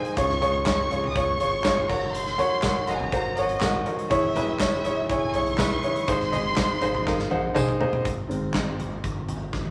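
Warm and uplifting, this piano-driven pop excerpt sets a clear, vintage grand piano up front against a huge arena drum kit with a punchy kick and bright cymbals, a round, deep analog bass, a jingly, very quiet tambourine and a distant, lush violin section carrying a dark, vibrato-rich melody, all in a wet club reverb, until the violins drop out at 7.6 s and the piano takes a solo over the drums and bass from 8.0 s.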